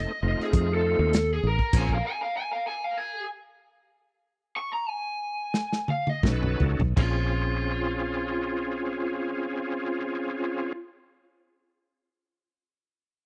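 A picked, overdriven lead guitar with slapback echo sings a mournful, soulful melody up front in this Bb minor soul blues excerpt at 80-100 BPM in a straight 4/4, over a gritty tonewheel organ with slow rotary swirl and chorus vibrato, a bright, punchy foam-muted fingered bass, and a dry, muffled drum kit with dark cymbals and a tight kick; the organ and bass break off at 1.7 seconds as the tempo gradually slows, and a drum fill from 5.5 seconds ushers them back at 6.2 seconds, all captured dry and close in a small 1970s-style room.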